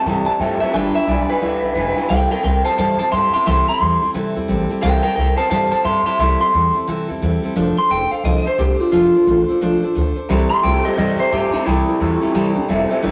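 Rockabilly with a retro, upbeat swing, cut from a longer piece: a bright, twangy lead electric guitar from a small old amp carries the melody through spring reverb over a picked dreadnought acoustic and a woody, dark pizzicato upright bass, while a second slightly broken-up, fingered electric guitar plays a low phaser-tinged riff that drops out at 2.1 seconds and returns at 10.3 seconds, all caught in a rough, tube-saturated rehearsal-room recording with a wet stone-room reverb.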